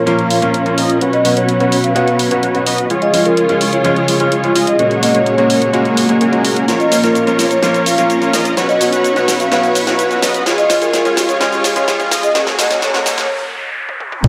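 A dark, lush production bathed in a long hall reverb frames this emotional, euphoric slice of festival progressive house at 127 BPM in straight 4/4, tuned to A4 = 435 Hz. A huge, thick supersaw riff sits up front under a sweeping filter, pumping with the sidechain and trailed by tape echo. Beside it, a mellow vibraphone played with soft mallets carries the melody with a slow vibrato and its own echo. A brilliant grand piano with short sustain and a distant symphonic string section fill out the chords over Bbm, Bsus2, Db and Gbadd9. The whole stretch is a build-up: the big-room drum kit, with its huge snare and filtered hats, cymbals and toms, plays a fill from 6.7 seconds, and faint risers and noise sweeps creep in from 7.9 seconds. After a short break, a punchy overdriven kick and a fat, nasal analog bass land at 14.2 seconds, just as the cut ends.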